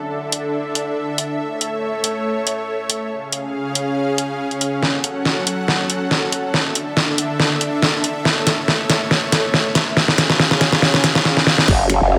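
Aggressive and chaotic, this heavy wobble dubstep excerpt is a half-time build-up with a light swing. A lush supersaw pad of detuned sawtooth voices over a sub octave holds slow-attack sustained chords through Dsus2, A, C# and F#m, with sidechain pumping and a low-pass filter shading its tone. The dubstep drum kit sits up front with a deep snare, hi-hat, finger snaps and crash cymbal, and drum fills run from 4.8 seconds onward. At 11.7 seconds a punchy electronic kick and a bright, saturated growl bass arrive on a low F#, the bass wobbling through a formant filter with chorus and overdrive. The mix carries a moderate plate reverb, and both the drum kit and the kick sound re-recorded in a large room.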